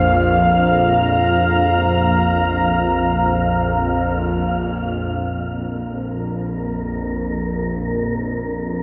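Bathed in a cavernous cathedral reverb, this ominous, unsettling dark ambient drone drifts in free time: a deep, moody pad of detuned sawtooth and sine layers with chorus sustains an Fsus4 chord until 5.0 seconds, a tense, nasal, string-like bowed drone with vibrato sits up front in the low register, and an airy, breathy wind-like tuned noise texture hovers quietly above, with a filter sweep moving through the drone from 5.0 seconds as the harmony settles on Bb5.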